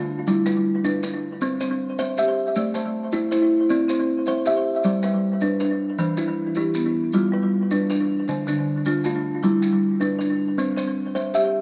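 Hypnotic and rippling, this traditional mbira-style interlocking cycle in 12/8 at 105 BPM in G mixolydian, cut from a longer piece, sets an up-front, woody, hollow-box kalimba playing short, vintage-toned thumb-plucked arpeggios alongside a percussive rosewood-bar marimba with medium hard mallets also playing arpeggios, both with delay across the full 11.6 seconds, while grainy, mellow maracas sit underneath from 0.3 seconds and a wet plate reverb soaks the mix in a dreamy haze.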